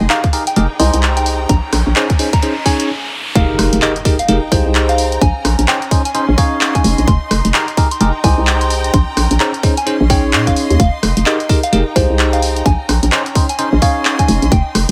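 A hollow, knocking FM bass anchors this soulful, late-night slice of two-step UK garage in F minor, its bouncy, punchy notes sitting up front over a swung 129 BPM groove in 4/4. A tight, layered electronic kick joins it, alongside a punchy analog drum machine supplying handclaps, hi-hat and rim click, both re-recorded in a small room. Bright, clean stabs from a bell-like tine electric piano carry phaser and tape echo, while a soft, pure synth bell melody drifts above through chorus, phaser and digital delay. A clear, focused studio string section adds a bowed, vibrato-rich texture with sidechain pumping, as the harmony moves between a rootless Fm11 and Bbm11. An electronic riser builds from 1.4 seconds, the groove stops briefly at 2.9 seconds, and an impact lands with the drop at 3.4 seconds, carrying the cut from a longer piece through a lightly reverberant mix.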